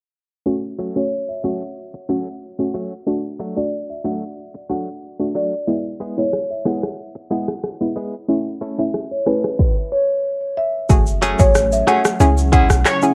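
Tough and sultry, this dancehall passage cut from a longer piece moves at 92 BPM in a straight 4/4 in F# minor, carrying the hazy, low-passed tone of a home cassette recording. A hollow, nasal square-wave pluck sits up front with chorus and plate reverb, alongside a twangy, scooped clean electric guitar playing arpeggios through harmonic tremolo, while a marimba with soft mallets carries the woody, rounded melody through tape echo. A filter sweep runs under the opening section as the chords move from F#m through D, E and A. The afro-pop drum kit arrives at 6.3 seconds with a deep kick, woody snare, crisp hats, handclaps, rim clicks and shaker, sitting close and tape-colored. At 10.9 seconds the second section opens on F#madd9 with a boomy, sine-like 808-style bass and a bright tube shaker in the background, soon joined by an ethereal, airy pad that pumps and phases beneath everything, before a brief vintage horn section stab lands at the very end over C#m.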